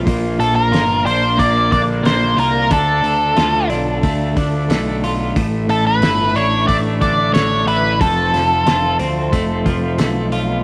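A straight 4/4 groove at 91 BPM comes from a muffled, cloth-damped drum kit with a fat snare, tight kick and rolled-off top, while an overdriven, round fuzz bass anchors this hypnotic, hazy psychedelic rock excerpt as it moves through Bb, Dm, Asus4 and F. A bright, twangy twelve-string electric guitar plays an up-front clean riff through harmonic tremolo, and a very quiet, distant flute ensemble holds airy chords with vibrato. From 0.4 s to 9.0 s a dark octave-fuzz lead guitar carries the melody with distortion and tape echo, all set in a small room with light reverb.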